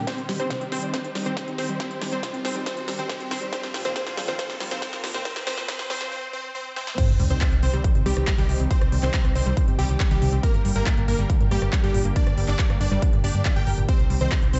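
A silky analog string pad and a lush unison pluck open this emotional, driving uplifting trance excerpt over a very quiet riser, swell and sub drop, as a bright supersaw stab melody, a catchy plucky unison lead second line, a tape-warm big-room dance drum kit with crisp hats, and a punchy, up-front electronic kick join a filter-swept build-up that breaks at 6.1 seconds before the drop at 7.0 seconds brings in a round, dark FM bass, with sidechain pumping on the synths and bass, tape echo on the pluck, stab and lead, and a light digital ambience.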